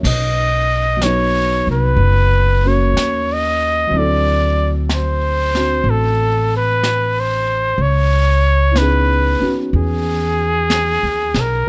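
The sound is dry and close, with detailed microphones catching every breath and string in this short cut from a longer jazz ballad in C# minor. At a slow 62 BPM in 4/4 with a lazy swing on the eighth notes, the mood is intimate and wistful. A breathy trumpet carries the melody from 0.1 seconds, sitting up front with a punchy, present tone and vibrato in a solo jazz style. Beneath it, a pizzicato upright bass on steel strings sounds woody and thumpy, while a dark, mellow concert grand piano comps quietly in the background with a deep low end. A vintage brush drum kit stays soft and mid-forward, its dark cymbals, high-tuned snare and tight kick heard through a warm, rolled-off top. The harmony drifts from Bmaj7 to D9 and settles on C#m9 at 7.8 seconds.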